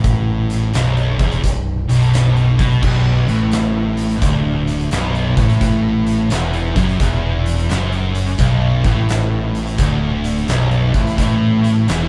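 A swung 86 BPM groove in 4/4 drives this ominous, brooding stoner and doom metal excerpt in B minor, where two thick fuzz guitars, one very quiet and one up front, grind out a riff over a growling, bright overdriven fingered bass and an oversized low-tuned drum kit with a boomy kick, fat snare, crash and hi-hat in a pumping, gritty room, joined at 2.8 seconds by a biting, double-tracked overdriven guitar riff, all captured as a band playing live in one wet-sounding room.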